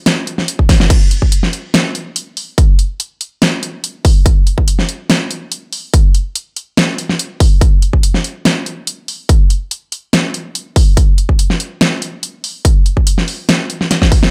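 A big-room dance drum kit opens at 0.1 s with crash cymbal, hi-hat and a huge, layered snare, joined at 0.6 s by a punchy, tape-tinged electronic kick, both up front and dry in this aggressive, menacing half-time dubstep passage at 143 BPM, with drum fills at 0.7 s and from 13.9 s.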